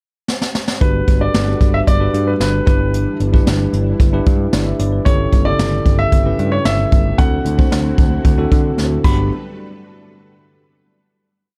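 This 1980s-style pop piece moves with a straight, uplifting and romantic feel in 4/4, opening on a brushed drum fill before the full band enters at 0.8 seconds for a short verse that closes on a final hit at 9.3 seconds. A clear, intimate concert grand piano carries a motif-based melody in song-like phrases, its action noise audible and its long sustain ringing out. Beneath it, a bell-like tine electric piano pushes the chord rhythm in close voicings with short fills, while a string machine cello pad sits very quietly underneath, soft in attack, mellow and evolving with an ensemble chorus shimmer. A picked electric bass drives steady eighth notes, and the brush kit stands up front with dark cymbals, a high-tuned snare, a boomy kick and a big backbeat, adding another fill just before the ending. The harmony travels from Gmaj7 through Em7/G, A7/G and D7 before resolving back to Gmaj7, all wrapped in a dark production with light reverb.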